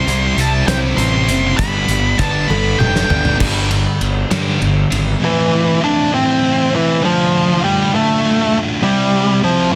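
An octave-fuzz lead guitar opens this angsty, dark alternative rock piece with an up-front, shadowy solo at a slow 66 BPM in 6/8, over a growly overdriven fingered bass, a bright high-gain riff guitar, a sludgy overdriven riff guitar and a woody, old-stringed acoustic guitar picking arpeggios in the background across C and Gadd9. A loose indie drum kit with a fat snare, punchy kick and dark cymbals pumps in the studio room and plays a fill from 2.5 seconds, and the acoustic guitar stops at 3.4 seconds. Bass and drums drop out at 5.1 seconds and the high-gain guitar at 5.2 seconds, leaving the fuzz lead and the sludgy guitar to carry a heavily limited, lightly reverberant passage through Am and Dm back to C.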